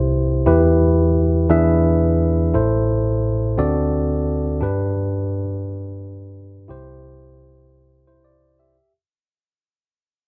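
A tine electric piano plays alone, up front and clean, with a warm voice heard through its built-in speakers and spanning from A1 up to E5. This short gospel fragment, cut from a longer piece, moves slowly at 58 BPM in a straight 6/8, reverent and soulful in C major, passing from Em through E7, Am and D7 to G and then C at 6.7 seconds. Light reverb surrounds the instrument, lossy compression artefacts colour the sound, and the passage fades out from 0.5 to 8.8 seconds.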